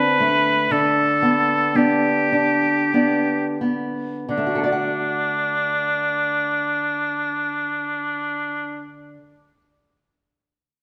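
A bright oboe carries the lyrical melody with light vibrato in a classical style, sitting up front in this serene romantic duo for oboe and classical guitar in D major, moving in a rubato 3/4 at 42 to 62 BPM and slowing over the first 4.3 seconds. The small, fingerpicked nylon-string guitar accompanies close by with audible finger squeak, moving from D7 to G/D before settling on D. A wet recital-hall reverb surrounds the pair, and the oboe stops at 8.9 seconds as the guitar rings on to 9.6 seconds in this fragment cut from a longer piece.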